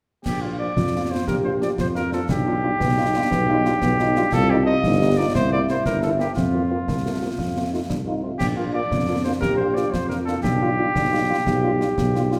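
A straight 6/8 lilt at 118 BPM in dotted quarters drives this spirited, proud military-style march for wind band in Bb major, cut from a longer piece, where a soft-attacked, distant cornet carries the melody up front over a mellow, smooth-topped tuba bass with light vibrato, a close and dry concert snare, clash cymbals and bass drum with dark cymbals, a clear, punchy French horn section in the background, and a warm, roomy euphonium second line that enters at 0.8 s, all placed in a wet scoring-stage reverb.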